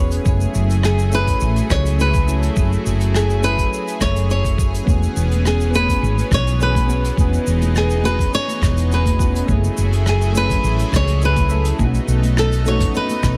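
A woody fretless electric bass sits up front in this relaxed, sunny sunset chillout excerpt, its round, hollow-bodied, amped tone anchoring a straight 104 BPM groove in E major. Above it, a fingerpicked flamenco guitar carries the melody with audible finger squeak and a touch of tape echo, while soft, mellow electric-piano-like synth keys with quick, decaying notes add accompaniment through chorus, phaser and tape echo. A lush unison pad of detuned sawtooth and square waves holds thick, bright sustained chords with slow attack and long release, moving from F#m9 to E6 and back before closing on B9. The rhythm builds from a dark, smooth brush kit with hi-hat, rim click, shaker and toms, joined at 0.3 seconds by a gritty, thumpy, sampler-style electronic kick re-recorded in a large room. Vintage, band-limited congas slip into the background at 4.9 seconds, and a light reverb gives the mix a small-room ambience.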